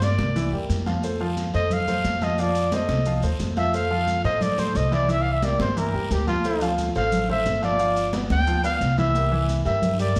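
A mellow, up-front trumpet solos with light vibrato and scooped notes across this lively, sunny Afro-Cuban jazz clip in C mixolydian at 177 BPM, cut from a longer piece, over an intimate baby grand piano with audible action noise, a woody, thumpy pizzicato upright bass, bright high-tuned congas, and a raspy guiro and grainy maracas in the background, all set in a wet large-studio reverb heard from further back in the room as the chords move from C7 through Dm7 and G7.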